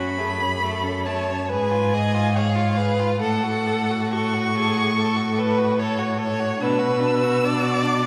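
The pulse is a freely breathing 4/4, stretched and held back in a rubato slow movement for string quartet, tender and warm in mood across this brief passage cut from a longer work. The first violin carries the melody high in its range, sounding expressive and somewhat distant, with vibrato and sliding portamento between notes. Beneath it the second violin traces a focused inner line in a lower register, while the viola supplies smooth, even accompaniment that sits close to the listener. The cello anchors the bass with a rich, even tone, and every part is a single bowed player using vibrato throughout the roughly 8 seconds. The harmony moves from the home minor chord through a sixth chord toward a final turn to B minor, all heard from further back in a resonant recital hall with a long, wet reverb.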